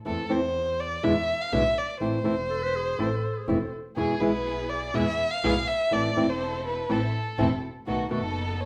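A dark, boxy violin sings with vibrato and portamento over thumb-plucked acoustic flamenco guitar and a focused, bowed double bass from the start of this sultry, passionate tango in A harmonic minor, taken from a longer piece and moving at 123 BPM in 4/4 with a rubato feel. A breathy clarinet with scooped notes and a smooth top slips in briefly at 2.5 seconds, and a lush, woody string section adds stabs from 4.0 seconds as the chords move from Am through E7 and E to land on B7. Moderate large studio reverb gives the parts a sense of space, with the violin and guitar sitting up front.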